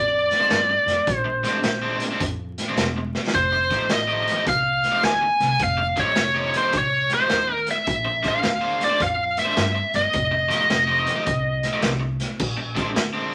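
Vinyl crackle and a moderate studio reverb give this short excerpt of electric blues shuffle a dusty, lived-in sound, with a gritty, swaggering mood. It moves at 106 BPM in 4/4 with a swung eighth-note feel in Bb mixolydian, alternating between Bb9 and F9 chords. An up-front, biting lead guitar carries the melody with bright, picked overdrive until 11.8 seconds. Beneath it, a cranked stack guitar plays the riff with its own overdriven, picked edge. A woody pizzicato upright bass on steel strings anchors the low end. The raw garage drum kit sounds saturated and pumping in a small room, with a boomy kick, dark cymbals, a rolled-off top, and a fill at 3.1 seconds.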